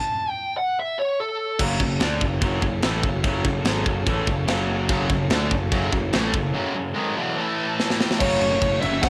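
Heavy metal at 145 BPM in F# minor, dark and heavy, this excerpt from a longer piece opens with a bluesy, dark-toned lead guitar playing a solo melody alone over a cassette-tape haze. At 1.6 seconds a tight, bright picked riff guitar, a growly fuzz bass and an airy, polished, up-front acoustic drum kit with a tight kick, medium-tuned snare and bright cymbals crash in, while a very quiet bowed chamber string section holds soft, intimate sul tasto chords with light vibrato beneath them. A second overdriven riff guitar joins in the background at 4.9 seconds, and after a drum fill the lead returns at 8.2 seconds, shadowed by a high-gain second line in the background, all under light reverb with a lo-fi home-cassette character.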